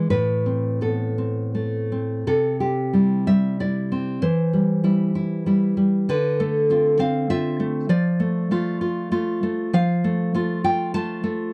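A dry, close studio sound with light reverb frames this brief excerpt, giving it an intimate 1970s character. It is a romantic piece for solo nylon-string guitar in 3/4, played with a rubato feel and a melancholic, wistful mood. The guitar sits up front with a full-bodied, deep classical tone, fingerpicked across a range from A2 to A5, and finger squeak adds a human touch. It opens on A minor before moving to C at 2.3 seconds, where a new section begins. The harmony then drifts through C/E, Dm7 at 6.1 seconds and Dm/F, lingering there as the passage ends, cut from a longer work.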